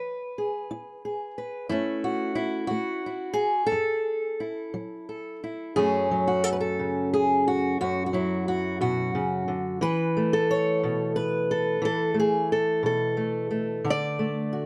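Hopeful and gentle, this short folk excerpt features a single fingerpicked acoustic guitar in a slow, straight 6/8 at 59 BPM, moving from E and F#m7 into F#m, Esus4 and D before it is cut off at 14.7 seconds. The old ladder-braced guitar sits up front with a dark, woody, boxy tone and the dull ring of old strings, spanning F#2 to D5. Light reverb adds a touch of space around the close, intimate sound.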